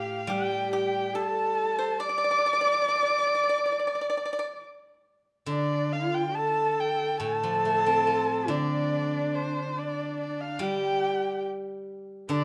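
Flowing in a free rubato at 70 BPM in 4/4, this tender, graceful fragment of Chinese traditional chamber music sits in the D yu mode. A dark, intimate erhu carries the melody up front with light vibrato, portamento and an airy bow, while a husky horsehead fiddle adds a rich, focused second line and a silvery, ringing steel-string zither, also up front, plays the accompaniment. A dry, percussive pipa shares the second line from the start until 4.5 seconds and returns briefly at 12.3 seconds, the ensemble set in a moderate recital hall reverb, with a new section beginning at 5.5 seconds.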